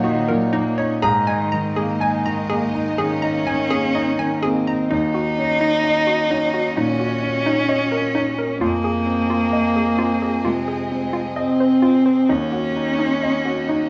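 A solo cello sits up front, bowed with vibrato, a focused tone and a smooth top, carrying the second line from Bb2 to Eb4 in this melancholic, reflective neoclassical piece for piano and strings. Alongside it, a concert grand piano plays the accompaniment from Eb2 to Bb5, its deep bass and long sustain giving a clear, polished and present foundation. A chamber string section holds sustained chords in the background, distant and expressive, with soft attacks, vibrato and portamento. A hollow, detuned square-wave pluck with chorus adds bouncy arpeggios, each note quick to start and short to decay. At 64 BPM in 4/4 with uneven, rubato beats in Eb dorian, the harmony moves from Ebm7 to Absus2, then into a second section at 4.9 seconds that passes through Fm7 before settling back on Ebm7, the group heard playing live in one room with light reverb.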